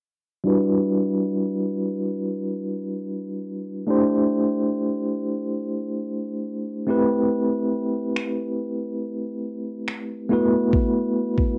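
Cut from a longer piece, this home cassette recording has a light reverb, setting a sensual, moody contemporary R&B scene. A clean tine electric piano, played through a combo amp with medium tremolo and a low-pass filter sweep, carries the accompaniment from 0.4 seconds over Em7, D7sus4, Am7 and B7sus4. At 8.2 seconds a detuned 8-bit drum machine joins up front with finger snaps and a thumpy kick, its sound gritty from a vintage 12-bit sampler and tape-warm from being re-recorded in a small room.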